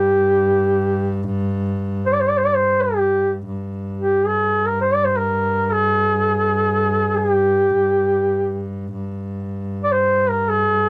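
This short passage of Arabic maqam ensemble music, cut from a longer piece, has a hypnotic, longing mood. A mellow duduk carries the melody from start to finish in a folk style, its tone colored by vibrato and scooped notes, and it sits up front in the mix even as it sounds somewhat distant and roomy. Beneath it, a bowed double bass holds a steady drone on a low G for the full 10.9 seconds, its tone clear, biting and earthy, with a light vibrato, and it sits lower in level than the duduk. The melodic idea is stated once, then returns at 3.5 seconds and carries on to the end. The sound suggests a dry, close 1970s-style studio recording with light reverb.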